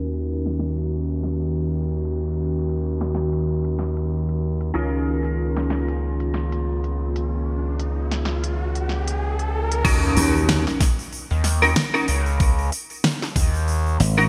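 This glitch hop excerpt, cut from a longer piece, opens on a warbling, nostalgic pad holding detuned, lo-fi chords under a filter sweep, while a bright, twangy clean electric guitar plays compressed stabs through analog chorus and delay. A gritty, saturated synth bass sits up front, and a pop drum kit with a fat snare and crisp hats arrives a moment later, its hats, snare and cymbals low-pass filtered and treated with gated reverb. The groove is gritty and funky at 94 BPM in 4/4, swung on the sixteenths, in Eb minor and tuned to A4 = 445 Hz, moving from Ebm7 to Db69. Sidechain pumping runs through the pad and guitar, and a riser climbs from 6.6 s into a drop at 9.9 s, where an impact hits, a knocking electronic kick comes in up front and the pad falls away. A punchy, direct slap bass joins at 10.2 s as the chords return to Ebm7. The whole mix has a bright 1980s-style digital sheen with light reverb.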